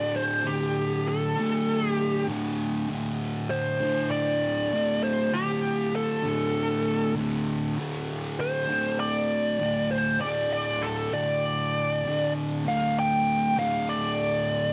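Hypnotic and sludgy, this metal passage, cut from a longer piece, moves at a straight 98 BPM in 4/4 tuned to A4 = 444 Hz, with a warm, double-tracked, up-front fuzz guitar grinding out a low distorted riff from a D5 chord while a picked fuzz lead guitar, also up front, carries the melody through wah, distortion and tape echo, all set in light reverb and a dark production before a new section arrives at 12.7 seconds.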